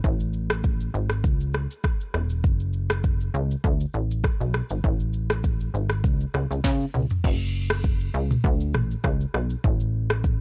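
A lightly swung sixteenth-note groove in 4/4 drives this mellow, smooth afrobeats excerpt, carried by an electronic afro-pop drum kit with a deep kick, sharp snare, rim clicks, shaker, toms and crash cymbal, plus a plucky analog bass whose punchy, nasal sawtooth and square-wave tone has a filter pluck with a fast attack and a decaying tail. Both parts sit up front and play throughout, with a drum fill from 6.6 to 7.2 seconds leading into a new section. The sound is dry and gritty with a cassette-tape character, the drums carrying a tape-warm tint.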